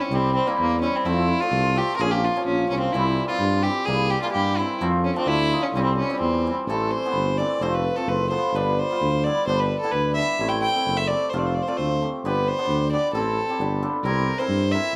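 A reedy, gut-string violin leads this festive, soulful klezmer excerpt, played close and up front by a single bowed player in a period style and set in plate reverb. A shimmering hammered dulcimer rings out the accompaniment while a mellow tuba, also up front, carries the bass with a light vibrato and a smooth top. The music sits in 2/4 at about 129 BPM and gradually speeds up, settling into A minor at 6.7 s, all in a moderate studio room.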